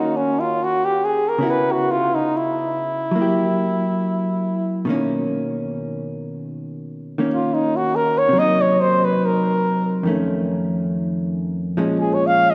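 A long, wet church reverb surrounds this intimate, melancholic jazz excerpt, taken from a longer piece and set at a slow 70 BPM swing in 4/4. Up front, a warm flugelhorn with light vibrato carries the melody as a solo for the full 12.5 seconds. Alongside it, a dark, clean electric hollow-body guitar plays picked, compressed accompaniment through a chord sequence that moves from Ebm7 through Gb7b9 and Bmaj9 to Bbm7.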